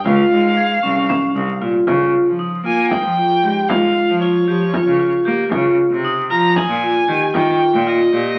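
Wrapped in the crackle of a very old 78 rpm record and a wet studio reverb, this playful, shimmering fragment of contemporary chamber music in 7/8 sets a clear, focused violin melody with vibrato against a bright, intense bowed cello bass, while a metallic, ringing vibraphone struck with hard mallets spins arpeggios and a deep, close, dry frame drum supplies the percussion.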